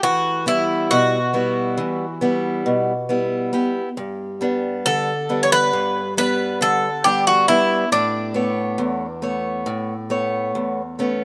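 Set in 9/8 at 137 BPM with a straight feel, this calm, peaceful Greek folk passage from a Greek bouzouki band is carried by a Greek bouzouki playing the melody up front, its picked double strings sounding metallic and partly doubled at the octave. A picked acoustic archtop guitar accompanies throughout, bright and boxy with audible finger squeak, moving through Em, G and Aadd9. Light reverb gives the pair a gentle sense of space until the bouzouki stops at 10.9 seconds and the guitar continues to 11.2 seconds.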